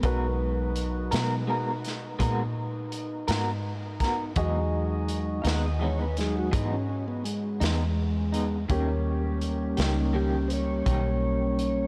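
This brooding, smoky slow blues opens with a mellow tonewheel organ in the lead, its soft, flute-like tone carrying a touch of key click and turning through a slow rotary speaker as it plays sustained chords and solos across the 11.9 seconds of this fragment. The 12/8 pulse sits at 55 BPM with a straight feel in G# minor, moving from G#m9 to Emaj7 at 4.4 seconds and D#7 at 8.7 seconds. Underneath, a vintage fingered electric bass sits up front, foam-muted, round and punchy in its low register, while a crunchy breakbeat kit of hi-hat, tight kick and medium-tuned snare adds a gritty, saturated texture with a rolled-off top. An electric guitar through a small old amp comps quietly with a slightly broken-up, compressed, picked tone and a tremolo effect, and a woody upright piano enters at 0.1 seconds, lower in the mix with long sustain. A huge ambient reverb soaks the whole mix in a dreamy haze.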